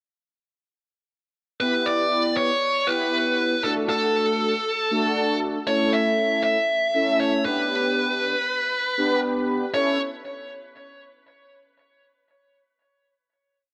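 A bright, nostalgic pop piece at 118 BPM in 4/4 with a straight feel, sitting in A mixolydian and moving through Em, D, A and G before landing on a closing A chord at 9.7 seconds. From 1.6 seconds a distorted, high-gain electric lead guitar plays a picked, motif-based melody of call phrases with tape echo, while mellow synth brass supplies brassy, round sawtooth chords with a detuned chorus shimmer, filter sweep and close voicing, pushing the chord rhythm. Both parts sit up front in a lush hall reverb that lingers as the final chord rings out to 11.8 seconds.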